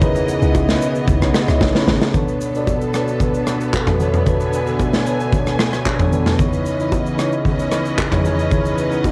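A straight 4/4 amapiano groove at 113 BPM opens on a drop, with a big acoustic rock kit of punchy kick, snare, toms, rim clicks, handclaps and shaker up front, warm congas and bongos sitting in the background, and a deep, round log drum bass sounding from 0.4 to 2.0 s before a drum fill at 1.6 s leads into the next section, while a bell-like, phased tine electric piano and lush, vibrato-rich strings with sidechain pumping carry late-night, soulful C#m9 and Bm9 chords, all colored by the character of a home cassette recording in this short cut from a longer piece.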